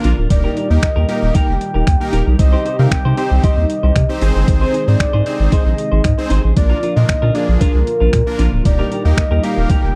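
A straight 4/4 pulse at 115 BPM drives this carefree, summery dance-pop piece in Eb major, built on a lo-fi sampler-style drum kit of finger snaps, hi-hat and a thumpy, muffled, overdriven kick sitting up front, beside a deep, saturated sine sub bass with sidechain pumping. A fat, bright, detuned sawtooth polysynth and a smooth analog pad in the background also pump, while a soft octave-layered synth lead carries the melody with a round, dark tone, vibrato, chorus, phaser and slapback echo, and a clean, twangy electric guitar plays a riff with subtle chorus. The dry, close 1970s-style studio sound moves through Eb, Cm, Ab and Bb across this 10-second cut from a longer piece.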